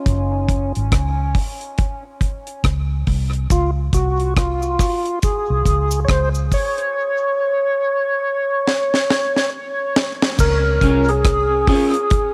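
Hazy and laid-back, this 70 BPM dub reggae excerpt in Db major, cut from a longer piece, sets a fat, key-clicking tonewheel organ melody with overdrive, slow rotary swirl and dub echo up front over a dry kit with a high-tuned snare, tight kick and cassette grit, a dark, round, foam-muted fingered bass, and a cabasa tucked in the background from 3.5 s, with a drum fill before a slightly broken-up, chorus-washed picked electric guitar slips in at 10.8 s, all in a small, lightly reverberant home-cassette room.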